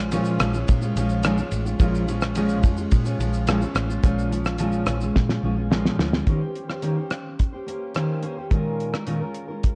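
A straight 4/4 groove from a cloth-damped, thuddy drum kit, with its fat snare, tight kick and dark cymbals sitting up front, carries this mellow, wistful indie and bedroom pop excerpt, and a drum fill runs from 5.2 to 6.3 seconds. A full-bodied, fingerpicked jumbo steel-string acoustic guitar, also up front, shimmers with lush chorus and vibrato over Bbm7 and Eb6 chords, while a round, punchy muted electric bass with tube saturation plays underneath until 6.2 seconds. The whole mix has a worn, warbling cassette-tape quality with wavering pitch and a small, lightly reverberant room.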